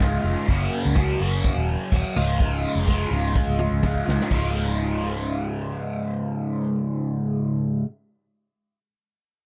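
A straight 4/4 pulse at 125 BPM drives this hazy, kaleidoscopic psychedelic rock excerpt in Db major, where a crunchy, double-tracked overdriven guitar riff treated with phaser sits up front over a round, foam-muted fingered electric bass, while a vintage drum kit with dark cymbals, a tight kick and toms plays a fill from 3.8 to 4.3 seconds before dropping out at 4.4 seconds, leaving guitar and bass in a dry, close 1970s-style studio sound as the chords move from Gb to Db.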